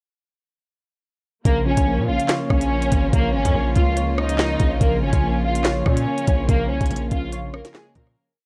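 At 1.5 s, an ominous half-time drill hook at 143 BPM in Bb minor begins, with a lush, vibrato-rich violin section up front playing a looping melody doubled in octaves over mellow, chorused electric-piano-like synth keys arpeggiating in eighths. Beneath them, an aggressive distorted 808-style bass holds long sub notes that follow the knocking kick and slide in pitch, while the drum kit hits a sharp clap-layered snare, crisp skipping hats and fast hi-hat rolls, and a very quiet, smooth string pad sustains chords underneath. The dry, gritty recording keeps its menacing mood until a fade-out from 6.5 s.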